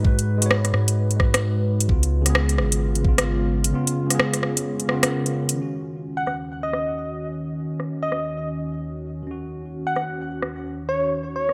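A worn, slightly out-of-tune electric piano with 12-bit sampler grit and a warbling, detuned tape-like pad open this melancholic, ghostly future garage excerpt in Eb minor at 130 BPM, both pumping against a knocking electronic kick and a deep, round dub sub bass over Abm7 and Db7. The kick drops out at 3.2 seconds and the bass shortly after, leaving a swung garage kit of metallic, filtered hi-hats and rim clicks to carry the groove beneath the nostalgic chorused pad and the delayed keys. At 6.2 seconds, over Ebm7, a gentle FM lead with vibrato and cassette-tape colour steps up front, all set in light digital ambience with a bright 1980s-style sheen.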